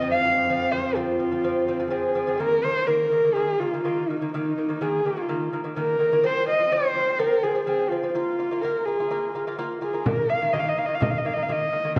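A straight, steady 4/4 pulse carries this windswept, vast fragment of Mongolian folk music, cut from a longer piece. Up front, a single bowed horsehead fiddle sings the melody with a husky, woody tone on horsehair strings, shaded by vibrato and sliding portamento. Beneath it, an acoustic lute fingerpicks delicate arpeggios on double gut strings, some doubled at the octave, while a distant, smooth cello holds a low drone until 2.4 seconds. A small, bright frame drum enters at 10.1 seconds, played with soft hands and heard close and dry. The whole recording sits in a recital hall's reverb and carries the worn, warbling pitch drift of old cassette tape, along with lossy compression artefacts.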